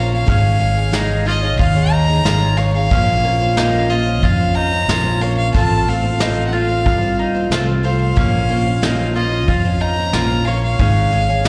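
A rich, up-front fiddle with light vibrato and an airy bow carries a yearning melody in Bb minor from the first moment, over a bright, picked steel-string acoustic guitar with audible finger squeak, a mandolin's double-strung arpeggios and a round, fingered electric bass. Soft brush drums with kick and snare join at 0.3 seconds, setting a straight 91 BPM 4/4 pulse, while slapback echo on the fiddle, guitar and mandolin adds a stirring edge as the chords move through Absus4, Bbmadd9 and F/A. This indie folk piece with a building arrangement is heard as a live gig through the venue's PA, with a recital hall's light reverb, in a short passage cut from a longer performance.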